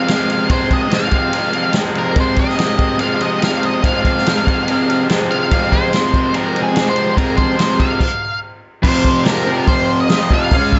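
Garage rock at 144 BPM in F minor, gritty and swaggering, with a bright, overdriven, double-tracked rhythm guitar riffing up front through spring reverb, a dark octave-fuzz lead guitar carrying the melody, and an acoustic vintage drum kit with a tight kick and a rolled-off top hitting crash, ride, hi-hat, snare and kick, all in a lightly reverberant room that holds on Fm until a stop at 8.0 seconds before shifting to an F5 chord at 8.8 seconds in this fragment cut from a longer piece.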